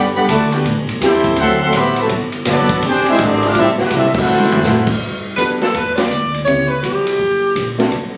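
Big band swing in G major at 165 BPM, this short, energetic and joyful excerpt swings in 4/4. A brilliant, up-front trumpet section carries the melody over a clear trombone section on the second line, both sections sounding with light vibrato until about 4.9 seconds. A woody upright bass with gut strings plucks a thumpy foundation throughout, while a swinging drum kit with a punchy kick and medium-tuned snare drives the groove with hi-hat, ride, crash and toms, adding a fill just after the band accent at 4.1 seconds. At 5.4 seconds a tight, present saxophone section takes over the melody as a baby grand piano with short sustain adds accompaniment. The harmony moves through rich jazz chords such as Em9, D9, Gmaj9 and E7alt, and the whole band sounds as if heard from inside a club, caught on a phone with moderate room reverb.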